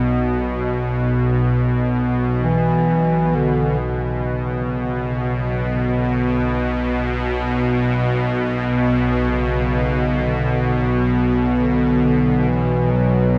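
A tense, string-like bowed drone with a detuned, ring-modulated edge sits up front in this cavernous, ominous dark ambient excerpt in free time and B minor, while a dark, smooth-topped solo bass clarinet in classical style enters in the background at 2.4 s and fades in from 3.8 s as the harmony settles on B minor, and a deep, full-bodied chorused pad with a sub octave arrives at 12.4 s, all bathed in a huge, wet reverb.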